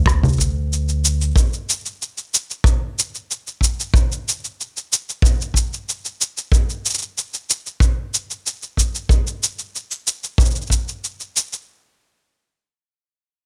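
Wistful and autumnal, this folktronica excerpt opens with a brief woody pizzicato upright bass on steel strings as a punchy, roomy acoustic kick and a muffled, pitched-down sampler kit of electronic rim click, shaker and congas enter almost at once, carrying a straight 4/4 pulse up front in a dry mix, all parts falling away by 11.7 seconds.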